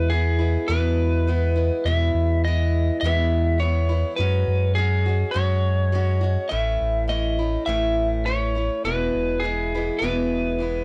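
This short clip has the homespun grain of a cassette home recording, with a light reverb around the players. It is folk rock with a heartland rock lean, in a straight, steady four, carrying an open-road mood. A dark, slightly broken-up electric lead guitar sits up front with a compressed, lightly driven tone, picking out the melody in a mid-high range. Beneath it, an old ladder-braced acoustic guitar with worn strings gives a woody, boxy picked accompaniment. A deep, full sub bass doubled at the octave has a rounded sine-and-triangle body with fast attack and long sustain, placed prominently in the mix. The harmony moves from E to F#sus2 at 4.2 seconds, then to A and back to E, all within one passage before the clip cuts off at 10.8 seconds.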